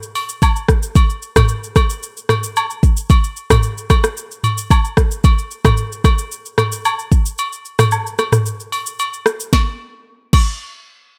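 A straight 4/4 groove at 112 BPM drives this short afrobeats excerpt, cut from a longer piece, with a mellow, sultry mood. An electronic, produced drum kit sits up front, pairing a deep kick and sharp snare with warm hats, rim clicks, shaker, toms and crash cymbal. Just behind it, a quieter acoustic percussion layer of agogo bells and woodblock, joined by maracas and group handclaps, carries a live-room character. A break arrives at 7.4 seconds, and a new section begins at 9.5 seconds as the drums play out to 10.5 seconds. The mix is dry, with little reverb.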